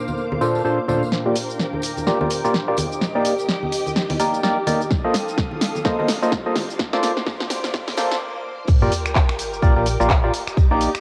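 Joyful and feel-good, this piano house excerpt moves in 4/4 with a swung sixteenth feel, built on shimmering, vintage string-machine violins holding sustained chords in the background and a very quiet, ethereal pad that drifts underneath. Up front, a hollow, nasal organ stab plays the riff with chorus, sidechain pumping and tape color, and a filter sweep runs across it through the build-up, while a plucky, dark analog bass sits very quiet beneath. A layered house kit brings a punchy snare, bright hats, crash, finger snaps, handclaps and a shaker, joined by ringing acoustic tambourine and congas struck with hard hands, plus a very quiet riser, swell and sub drop. A punchy electronic kick arrives at 4.9 seconds, a short break opens at 8.2 seconds, and at 8.7 seconds the drop lands with an impact as a very quiet, loose acoustic kit of hi-hat and snare slips in. The whole excerpt sits in a moderate spring reverb with the thin, high-passed character of a home cassette recording.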